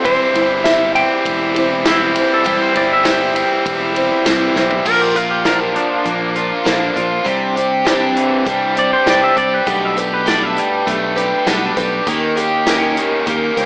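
This short cut from a longer piece has the sound of an AM radio broadcast, set in a moderate echo chamber reverb. It is hopeful, open-road folk rock with a heartland feel, moving at a straight 100 BPM in 4/4 over chords that run from C/E through Bb, Cadd9 and Gadd9/B to Eb7. Up front, a bright, shimmering twelve-string acoustic guitar with octave doubling picks the accompaniment, while a biting, double-tracked overdriven guitar with spring reverb drives the riff. A fingered electric bass sits low and warm beneath a natural, punchy country drum kit, and a very quiet, jingly tambourine comes and goes. A dark, clean semi-hollow guitar with spring reverb sings the opening melody until 4.2 s, and a twangy electric guitar with harmonic tremolo weaves a second line through most of the passage. After a drum fill, a clean electric guitar solo takes over at 4.9 s and carries through to the end.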